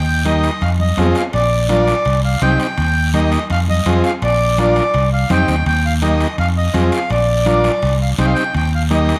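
A straight cumbia pulse in 4/4 rolls along on thick-skinned congas and ringing metal-shelled timbales in the background, with a raspy guiro scraping alongside and a dark, round, punchy fingered electric bass up front. Over a repeating Eb, Fm, Bb, Cm cycle, a buzzy, overdriven vintage combo organ with heavy vibrato fills in the accompaniment while a reedy, boxy accordion carries a solo throughout the whole 9.2-second clip. The mood is sunny and festive, set in a moderate large-studio reverb.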